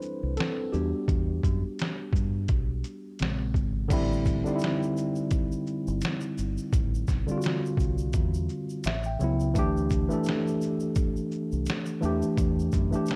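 Hazy and nostalgic, this lo-fi hip hop excerpt moves at 85 BPM in 4/4 with a gentle 16th-note swing, set in A dorian and tuned a touch below standard pitch. A mellow tine electric piano, worn and slightly out of tune, sits up front through a cassette-tape haze and low-pass filter, taking a solo through the opening section before settling into chords that drift from D9sus4 and Em7 through Bbm7 to Am7. A trip hop sampler-style drum kit, compressed, pitched down and muffled, drives the groove with a thumpy kick, a medium-tuned snare, hi-hat, shaker and crash. Beneath it, a deep dub fingered electric bass adds a dark, round low end from 0.2 seconds, and a grainy, saturated tube shaker slips in far in the background at 3.9 seconds. The electric piano adds a short fill around 8.5 seconds as the harmony passes through A9 and Dsus4, all captured dry with little reverb and a tape-worn character.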